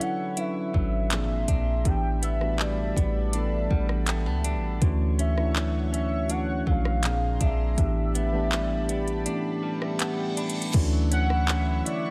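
Contemporary R&B at 81 BPM in D major, tender and smooth, with a velvety synth lead carrying the melody through chorus and tape echo over a mellow tine electric piano that adds fills, a shimmering chorused pulse-width pad, tape-echoed clean guitar arpeggios recorded direct, a tape-warm drum kit with soft kick, metallic hats, handclaps and rim clicks, and a deep, boomy 808-style bass entering at 0.7 seconds, while a reverse cymbal sounds during the latter part of a short break before the Dmaj9 return at 10.7 seconds in this fragment of a longer piece.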